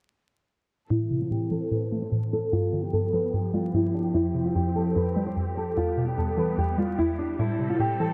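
A bright, fingerpicked nylon-string guitar carries the melody up front in this eerie, hard-hitting half-time hip hop excerpt, its classical tone marked by an audible finger squeak. Beneath it, a woody, round synth pluck with a mallet-like, percussive FM attack, short decay and a noise layer supplies the accompaniment, colored by chorus and phaser. A distant, lush symphonic string section holds bowed chords with vibrato, sitting lower in the mix than the other two parts. All three enter at 0.9 seconds and run to 8.1 seconds over a filter sweep, moving through Am, G7, Fsus2 and Em before returning to Am. The dark production adds vinyl crackle, light reverb and small room ambience.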